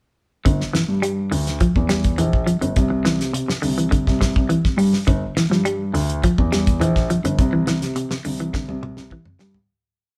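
A lightly reverberant live-room sound frames this short, hypnotic and defiant afrobeat groove in G dorian at 104 BPM, where a dry 70s drum kit with a fat snare and tight kick drives an afro kit groove up front, a dark, boxy baby grand piano carries a syncopated bass riff in its low register, and a clean, hollow-bodied semi-hollow electric guitar repeats a fingered arpeggio ostinato over chords moving from G5 to C and G7(no3), before the whole band fades out from 7.4 seconds under a closing drum fill at 8.5 seconds.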